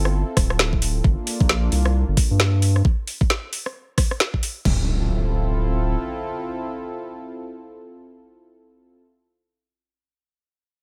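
Skippy and soulful, this short UK garage two-step cut in D minor runs at 133 BPM with a swung feel, as a smooth, chorused sawtooth pad holds sustained Dm7 and Gm7 chords under a deep, saturated sine sub bass, both pumping against an overdriven, knocking electronic kick and a layered garage kit of woody snare, rim clicks, metallic hats and crash that drop out at 4.8 seconds. The pad returns to Dm7 while the sub bass carries on until 6 seconds, and an electronic impact runs through to 9.2 seconds in a dry, close mix.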